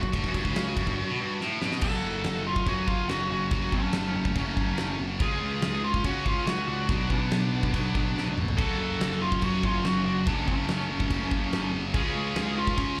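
Heavy metal at 142 BPM in F# harmonic minor, epic and dark, heard as a live gig through a club PA, where a high-gain lead guitar carries the melody with slapback and tape echo over two bright, distorted rhythm guitars riffing in the background (the second one dropping out between 1.8 and 8.6 seconds), a growly fuzz bass, a big-room acoustic kit with a fat snare, punchy kick and drum fills, and a nasal parked-wah guitar adding a second line from 1.8 seconds, as the chords move through F#m, C# and Bm.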